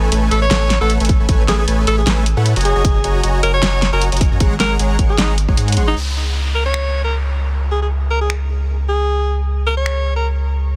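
Driving at 154 BPM in 4/4 with a half-time feel and a light 16th-note swing, this euphoric, bright future bass fragment opens on a drop where a huge, detuned supersaw riff, cassette-tinged and filtered, pumps against a deep, saturated sub bass while a pop kit of finger snaps, hi-hat and fat snare drives underneath, joined at 1.1 seconds by a punchy electronic kick. Over chords moving from Amaj7 through Gb6 and Ab7sus4, a bright alto saxophone carries the jazz-style solo melody with light vibrato, subtone and scooped notes, its line echoed by digital delay and breathing with the sidechain. The kick drops out at 5.6 seconds, and from 6.0 seconds the supersaw is gone as a downlifter sinks beneath the sax, bass and drums over a Db5 chord, all in a dense, heavily limited, fairly dry mix.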